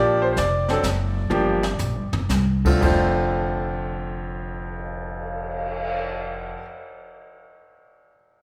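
A roomy hall sound with moderate reverb frames this short swinging jazz piano trio fragment in F major, in 3/4 at roughly 112-131 BPM with a warm mood. The brilliant, up-front grand piano carries the melody over a woody, thumpy upright bass with gut strings and an airy brushed drum kit with a high-tuned snare and boomy kick. The group slows through the opening 2.8 seconds, with a drum fill at 1.3 seconds, as the harmony moves from Gm7 through D to settle on F6.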